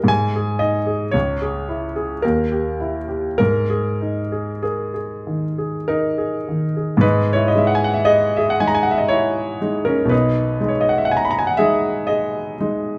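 A clear grand piano plays this melancholic, wistful romantic nocturne in G# minor alone from 0.0 to 13.0 s, in a slow, rubato 3/4 that drifts between 48 and 62 BPM and is tuned to A4 = 441 Hz. The playing sounds intimate and natural, with audible action noise and a short sustain across a range from B1 to B5, as the harmony moves from G#5 through C#m and D# back to G#5. The piano is up front while a wet, large studio reverb places the listener further back in the room, and this passage, cut from a longer piece, brings back its opening section at 7.0 s.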